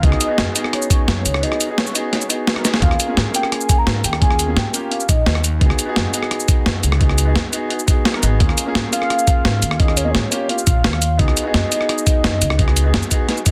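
A straight, rolling breakbeat drives this uplifting liquid drum and bass excerpt: a gritty, tape-toned sampler kit of snare, hi-hat, rim click and shaker sits up front with a thumpy, compressed electronic kick, marked by a drum fill at 2.6 seconds. Beneath, a dark, woody pizzicato upright bass on gut strings anchors the harmony, while a concert grand piano with deep bass and long sustain, touched by dub echo, moves between Db9sus4 and Eb9sus4 chords. A velvety, smooth synth lead, thickened with unison, sub octave, chorus, tremolo and dub echo, carries the melody, pausing at 5.6 seconds and returning at 8.9, all within a dry, dense and heavily limited modern mix.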